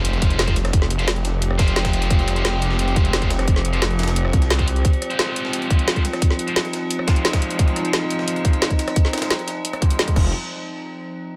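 Dark, aggressive technical drum and bass with a futuristic edge, built on a tight, up-front electronic kick, a layered kit of woody snare, metallic hats, rim clicks and crash, and a very quiet, gritty pitched-up breakbeat, while a snarling, detuned saw bass growls until 4.8 seconds beneath an eerie, inharmonic FM drone with chorus and high-gain, double-tracked guitar stabs run through a filter sweep and tape echo, all opening on an impact and a barely audible sub drop in this cut from a longer piece.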